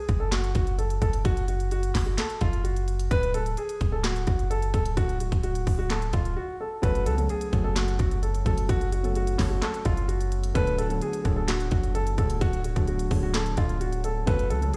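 A dark, vintage-toned baby grand piano carries the melancholic melody with long sustain and a slapback echo, over a deep, sine-like 808-style bass and an up-front electronic trap kit of hard-clipped kick, sharp snare, crisp hi-hats and handclaps. This brooding trap excerpt moves at 129 BPM in a half-time feel, cycling through F#5, D and F#m chords. After a short break at 6.4 seconds, a soft, boxy felt-muted upright piano joins at 6.8 seconds with intimate accompaniment and audible action noise, all heard as if played through a big sound system in a bare stone room.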